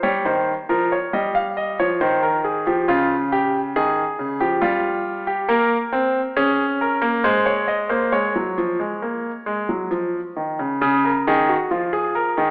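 Heard through a narrow AM-radio filter and bathed in the wet reverb of a recital hall, this short cut from a longer classical piece is a joyful, lively baroque-style two-part invention in 3/4 at 68 BPM. A clear, polished baby grand piano plays alone and up front, spanning Db3 to F5, with harmonies moving from Eb through Abmaj7/Eb and Fsus2/G before settling into Db major at 5.5 s. A fresh section begins at 10.8 s, and the piano plays on until 12.5 s.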